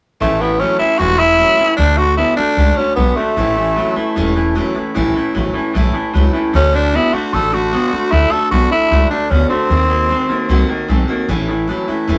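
The recording has the rough, close feel of a rehearsal room, with a moderate small-room reverb. This is an upbeat, retro rock piece in a straight 4/4, cut from a longer performance. Up front, a raspy tenor saxophone carries a gritty, pop-style solo melody with vibrato from 0.2 s until it drops out at 10.7 s. Behind it, an electric guitar through a small old amp plays a twangy, slightly broken-up, lo-fi riff, while a picked steel-string acoustic guitar with fresh strings adds bright accompaniment. A pizzicato upright bass sits up front with a woody, dark, thumpy tone. The harmony moves between A and D, passes through D#dim7, and settles back on A as the guitars and bass carry on to 12.2 s.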